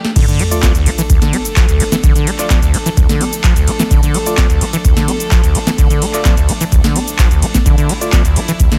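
A brief drum fill on a booming, overdriven analog drum machine, with crisp snare, metallic hats, claps, congas, shaker and cymbals, opens this raw, hypnotic 128 BPM acid house cut in D minor, over clear, earthy chamber strings holding sustained chords that pump against the sidechain. At 0.2 seconds the drop lands on D minor with a deep, overdriven electronic kick, a squelchy, resonant sawtooth acid bass riff with a filter sweep and sidechain pumping, and a sub drop impact in the background that lasts until 2.0 seconds. From 0.5 seconds, hollow, mellow organ-like stabs with subtle chorus and tape echo dot the dry mix.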